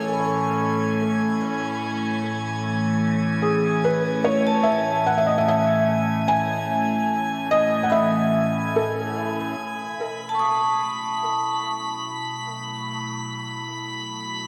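A straight, unhurried 4/4 pulse carries this peaceful, serene ambient fragment, cut from a longer piece and set in a lush hall reverb. A soft, felt-muted upright piano with audible action noise plays a mellow, intimate melody through delay until 9.3 s. Beneath it, an evolving, morphing wavetable pad holds bright, up-front chords through phaser, a glassy texture of drifting overtones shimmers high above with chorus, and a close-miked vibraphone with medium hard mallets rings out metallic arpeggios through delay; at 9.6 s the harmony moves from Amaj7 to B7sus4 as the pad fades in.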